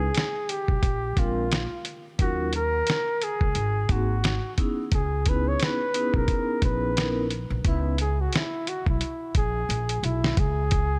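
Smoky and nocturnal, this jazz-hop cut from a longer hip hop piece sits at an unhurried 88 BPM in 4/4, with a lazy swing on the sixteenths and a C# dorian colour. A breathy, close-miked flugelhorn carries the melody up front from start to finish, its soft attack and gentle vibrato trailed by tape echo. Beneath it, a vibraphone played with soft mallets rings out mellow, airy chords with a slow motor vibrato until it drops out at 7.9 seconds. A woody, growly pizzicato upright bass holds down the low end throughout, while a compressed, pitched-down sampler-style drum kit supplies a thumpy kick, fat snare and hi-hat with a muffled, tape-warm feel, capped by a drum fill at 9.7 seconds. The harmony moves from a rootless C#7 through A#7, D#m7 and G#7 to C#m7, settling on C#5 at 10.4 seconds, all wrapped in a studio reverb.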